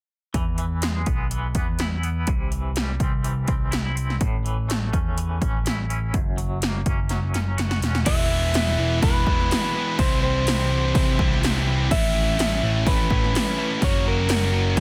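A straight 4/4 pulse at 125 BPM drives this anthemic, restless quiet-loud alternative rock passage, cut from a longer piece and moving through E, C, A and F# chords. Up front, 80s electronic pad drums with overdrive give a punchy kick, a gated snare, metallic hats and crash cymbal, joined from the start by a growly, amped electric bass that carries the low end. Over them, a twangy, clean electric guitar picks compressed arpeggios through a tremolo effect, and a drum fill at 7.1 seconds sets up the louder half. At 8.1 seconds the arpeggios drop out and three riffing guitars take over: a tight, bright distorted one, a double-tracked high-gain one, and a crunchy overdriven one with spring reverb sitting in the background. On top, a dark, slightly broken-up lead played through a small old amp carries a fingered, lo-fi melody with slapback echo. The room is nearly dry and the master is dense and heavily limited, so the loud section lands as a thick, compact wall.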